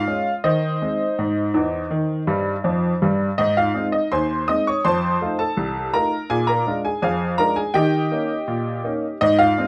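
In a straight two-four feel, this cheerful, jaunty ragtime fragment features a single upright piano, woody, worn and slightly out of tune, sitting up front with long sustain in a moderate club reverb, ranging from deep bass to bright treble, adding a brief fill around 2.3 seconds as the harmony moves through a chain of dominant sevenths.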